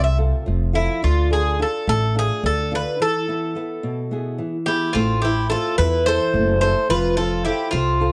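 Greek folk from a bouzouki band, moving at 215 BPM counted in eighths in a straight 7/8, with a moody, cool character in this excerpt cut from a longer piece. A bright, metallic bouzouki sits up front carrying the melody, its picked double strings ringing with some octave-doubled courses, while a fingerpicked flamenco guitar accompanies with audible finger squeak. An upright bass with gut strings, woody, dark and thumpy, is placed up front alongside the lead. The harmony moves from F to Dm and onto E, where a break runs from 3.0 to 5.0 seconds, before settling into A minor at 5.0 seconds and shifting to F. At 4.7 seconds a second, mellower bouzouki joins beneath the lead with its own picked, octave-doubled line. The sound is dry and close, in the manner of a 1970s studio recording, with only a small room reverb around the players.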